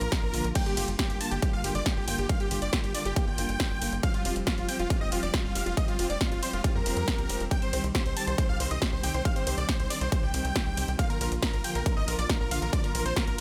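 A huge, bright supersaw lead carries a euphoric melody through this bittersweet, emotional uplifting trance excerpt, pumping against the sidechain with a trail of delay while a very quiet, catchy plucky unison lead traces a second line alongside it. A dark, intimate chamber string section holds soft-attacked bowed chords with light vibrato, and a tight, saturated sequencer bass drives the low end over chords moving from Gm7 through Fsus2 and Cm to Bb. An up-front, tape-warm electronic kick anchors the drums alongside an overdriven analog drum machine with punchy snare, hi-hat, ride and crash, all set in a digital ambience.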